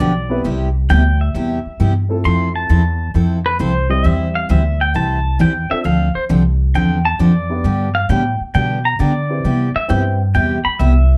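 A clean, compressed pedal steel guitar carries the melody as a solo across the whole 11.2-second excerpt, played with fingerpicks and slide and shaped by volume swells. This playful, swinging slice of country western swing moves at 133 BPM in 4/4 with a lilting eighth-note swing, centred in C major. A bright, full-bodied jumbo acoustic guitar with fresh strings is picked up front as accompaniment, while a growly pizzicato upright bass gives the low end a woody warmth. From 0.3 seconds a dark, mellow upright piano adds softer accompaniment further back in the mix. The harmony moves through Cmaj7, Fmaj7, C, Dm7 and G before settling back on Cmaj7, all framed by a moderate club reverb.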